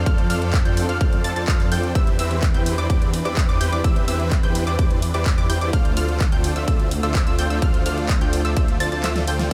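A punchy, up-front electronic kick drives a straight groove alongside a big-room dance kit of handclaps, hi-hat, ride cymbal and a huge snare, in this anthemic, triumphant slice of festival progressive house. A thick, compressed supersaw riff with delay leads over a chorused, saturated detuned saw bass, while a lush unison pluck plays high arpeggios through delay and a clear, bowed string section holds sustained chords in the background, all four pumping to the sidechain through F6, Cmaj7/E and Dm7. The dry mix keeps its drive until the kick drops out at 9.0 seconds for a drum fill.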